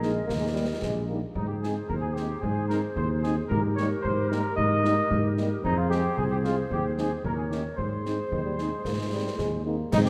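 A spirited, proud military-style march for wind band in 2/4 at 112 BPM in Ab major, cut from a longer piece, where a mellow, vintage trumpet section carries the melody up front over a dark, up-front tuba bass, a distant, roomy woodwind section with vibrato, background French horns, concert snare, bass drum and clash cymbals with dark cymbals, and brief clear euphonium phrases, until a hollow wooden piccolo and a tight trombone section join at 9.9 seconds, all in a moderate concert hall reverb.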